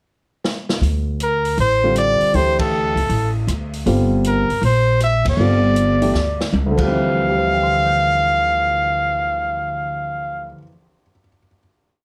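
A swung 4/4 pulse at 158 BPM opens with a drum fill at 0.4 seconds, and the open jazz kit keeps time on the hi-hat with dark cymbals and a boomy kick, while a woody, thumpy upright bass plays a two-feel line through D minor modal jazz, moving from Dm11 to Gm11. Over this a bright, forceful trumpet states punchy, song-like motifs with scooped notes and light vibrato, and a grand piano comps in syncopated quartal voicings with short sustain. The band hits accents along the way before a second fill at 6.1 seconds leads into the final chord, with the intense, searching mood set in a moderate studio room and pressed into heavily compressed, radio-like sound.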